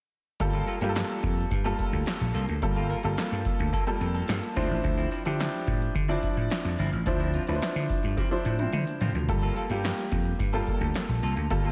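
A growly, up-front vintage slap bass drives this funky, danceable early-eighties boogie funk excerpt at 108 BPM in G dorian, joined by a brilliant baby grand piano comping over Gm9 and Dm9, a clean semi-hollow electric guitar riff with subtle chorus sitting in the background, a jingly tambourine, and an electro analog drum machine with a deep kick, punchy snare and metallic hats that plays a fill from 8.2 to 9.3 seconds, all set in a dreamy mix soaked in lush hall reverb.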